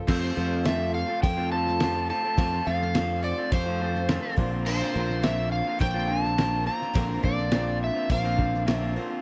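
A straight 4/4 pulse from a cloth-damped, thuddy drum kit anchors this short, nostalgic folk rock and heartland rock fragment, its tight kick, fat snare, dark cymbals and muffled, saturated sound giving it a gritty, lo-fi character. A sustaining fretless bass with lush chorus sits up front, growly and punchy, while a twelve-string acoustic guitar shimmers in the background with picked, octave-doubled strings and audible finger squeak. An electric guitar through a small old amp plays a compressed, slightly broken-up riff, and a very quiet, reedy electric piano adds barky tremolo as accompaniment. Over the top, an overdriven slide guitar carries the melody up front with a warm tone. The harmony moves from F to Bbadd9 at 4.4 seconds, and the whole passage has the dry, close feel of a 1970s studio recording with little reverb.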